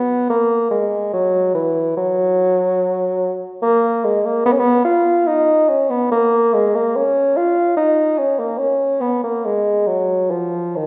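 A dark, up-front solo bassoon with light vibrato and a smooth top spins a grave, flowing baroque-style fantasia in 3/4 with rubato phrasing, its line ranging from Eb3 to F4 across this 10.9-second excerpt from a longer piece and blooming into the wet reverb of a recital hall.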